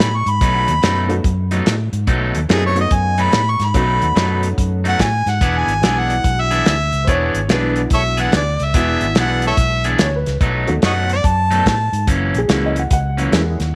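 Soulful and swaggering, this electric blues shuffle moves with a swung feel, cut from a longer piece and riding a B7 to E7 and back to B7 progression before turning to F#7. A harmonica sings the lead up front in a jazz style, its smooth top roughened by overdrive and a slapback echo, with light vibrato, tongue slaps and scooped notes, until it drops out at 12.1 seconds. Beneath it, a bright, twangy electric guitar on the edge of break-up plays a fingered riff, while a round, amped electric bass sits dark and prominent in the mix. A soul drum kit recorded in a small room anchors the groove with hi-hat, a tight kick and a medium-tuned snare, its sound mid-forward with a rolled-off top. A jangly, detuned honky-tonk upright piano adds background accompaniment from 1.1 seconds, and at 7.0 seconds a mellow, worn second upright piano joins with an intimate, woody second line and audible action noise, lending a vintage character, while the whole ensemble sits in a studio reverb.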